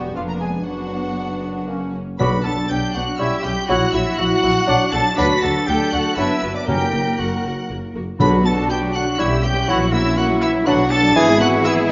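Lush, vibrato-rich violins carry the melody of this stormy, urgent classical-period orchestral passage in 3/4, backed by clear second violins, pure-toned flutes, a dark cor anglais and a warm clarinet on inner lines, while a punchy, mellow bassoon, focused violas and tight French horns fill out the harmony over cellos and distant double basses, and a roomy solo trumpet adds stabs and articulate hard-mallet timpani strike from 2.2 s, all set in a recital-hall reverb.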